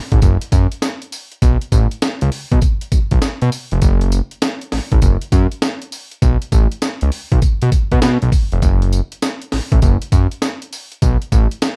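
New jack swing R&B at 100 BPM in F# minor, this short excerpt, cut from a longer piece, feels bouncy and slick, with a 65% swing on the 16th notes in 4/4. A breakbeat sampler-style drum kit sits up front, compressed, pitched up and gritty, with a thumpy kick, a high-tuned snare, hi-hat and tambourine carrying a tape-warm character. Beside it, a fat analog bass built from detuned sawtooth tones holds the low end, ranging from E#1 to B2 with a fast attack, sustained notes and a filter sweep. Both parts start together at 0.1 seconds and run through the clip, the bass stopping at 11.5 seconds just before the drums finish at 11.8. Light reverb and a dark, warm production frame the pairing.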